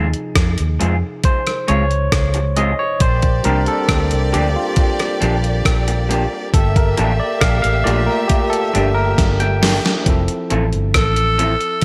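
Romantic and smooth, this short cut of lovers rock reggae moves at an unhurried 68 BPM in F major, with a barky, lightly overdriven tine electric piano carrying the accompaniment and taking a solo through the first 10.1 seconds. Beneath it, a dark, foam-muted fingered bass sits up front with a round, punchy tone, while a gated 80s drum machine adds a thumpy kick, overdriven gated-reverb snare, rim clicks and hi-hat, finishing the opening passage with a fill. An electric guitar through a small old amp, slightly broken-up and lo-fi, plays stabs bathed in lush chorus and tape echo. A studio violin section enters at 3.0 seconds with a second line full of vibrato and portamento, its tone close and expressive. The harmony drifts from Dbmaj7 through Bb6 and Gm7 before settling on Fmaj7, where a raspy, gritty tenor saxophone arrives at 11.0 seconds for a forceful pop-style note on A4, touched with tape echo, in a dry room sound.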